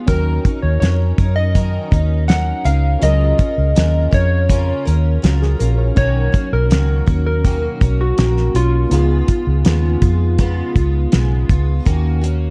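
A dark, warm production with small room ambience frames this short cut from a longer indie and bedroom pop piece in F# major, moving at an unhurried 82 BPM in a straight 4/4 with a sunny, dreamy mood. Up front, a damped 70s drum kit gives a dry, fat snare and a tight kick alongside hi-hat, while a vintage muted fingered electric bass sits equally forward with a round, foam-muted, amped tone. A bright picked steel-string acoustic guitar with fresh strings and audible finger squeak adds full-bodied accompaniment, colored by analog chorus and a warbly pitch drift. Behind it, lo-fi synth keys blend pulse, sawtooth and sine tones with a sub octave under chorus and cassette tape character, ending at 11.9 seconds. The melody belongs to warm analog keys, a mellow square-and-sawtooth sound with lush chorus and tape echo, floating over a progression of D#m7, F#maj7/C#, Bmaj9 and C#7 before returning to D#m7 near 11.9 seconds, with the guitar and bass ringing on to 12.5 seconds.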